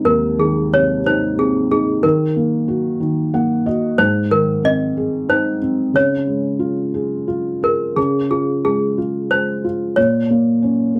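Tender and gentle, this children's lullaby sways in a loose, rubato three-four feel, cut from a longer piece. A felt-muted upright piano, dark and boxy with its action noise audible, carries the accompaniment and adds a brief fill at 3.0 s. From 0.1 s a clanky, bell-like toy piano, slightly out of tune with plastic hammers, sings the melody, and both sit up front in a dry, close 1970s-style studio sound.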